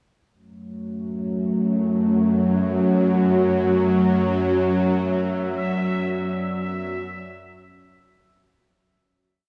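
A deep, moody analog pad with chorus and phaser opens this ominous, unsettling dark ambient drone in free time at 0.7 s, slowly shifting from F#m to Bm/F# over a tense, string-like bowed drone that sits up front with vibrato, a ring-modulated edge and its own reverb, before a bubbling, resonant texture of random filter steps on a held high note enters softly with chorus and reverb at 5.0 s, all within a cavernous cathedral reverb as the piece fades out from 4.5 s.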